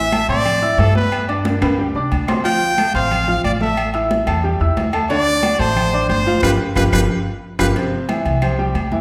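A close-miked, pop-style solo trumpet sits up front with a bright lead line over a festive, danceable salsa groove at 181 BPM in 4/4, and it drops out at 7.7 seconds. A warm, smooth concert grand piano with a deep, vintage low end shares the foreground in accompaniment, moving through Am, G, Dm7, A5, D7 and G7 before landing on C major. Underneath, a dark, thumpy pizzicato upright bass with gut strings holds the low register. The percussion layers medium-tuned, thin-skinned congas, ringing, saturated and compressed agogo bells and timbales, and very quiet, close and dry woody claves. A drum fill arrives around 1.5 seconds, and a second fill coincides with a band accent from 6.4 seconds, all wrapped in the lush reverb of a recital hall in this short cut from a longer piece.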